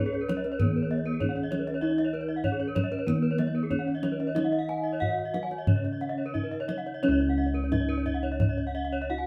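A straight 4/4 pulse at 87-97 BPM drives this shimmering, ceremonial excerpt of Balinese gamelan in Db slendro, where a mellow, padded-mallet bronze metallophone carries the melody while two horn-mallet metallophones, one bright and airy and the other boxy, ring out arpeggios above it, their paired tuning producing pulsing beats. Up front, round, vintage-sounding bossed gongs hold the bass, the deep, close kendang drums from 0.3 s to 8.6 s, and a breathy bamboo xiao sits distant in the background as a second line until 6.9 s. The band plays live in one room with wet studio reverb, moving into a new section at 7.0 s.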